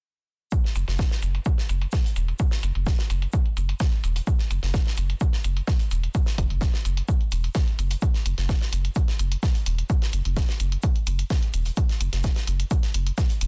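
A punchy, tape-warm electronic kick drives this hypnotic, trippy acid house cut at 128 BPM, joined by a low-passed analog hi-hat, a loose indie drum kit with a fat snare, shaker and pumping room sound, and a round, deep, nasal analog bass entering at 0.8 seconds, sidechain-pumped and filter-swept between E1 and F#1, all in a dry, dense, heavily limited mix.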